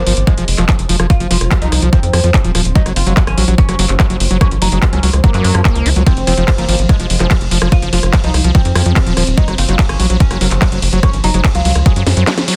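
A plucked, woody oud melody opens over a screaming, squelchy acid riff drenched in distortion, chorus and delay, a dark, saturated sequencer bass and faint juicy blips, while a tense, swarming drone, a punchy up-front kick and a techno kit of cracking snare, metallic hats, ride, rim clicks and handclaps join in this driving, alien psychedelic trance excerpt in F phrygian at 145 BPM, moving between F5 and Gb5 chords before a drum fill at 12.1 seconds.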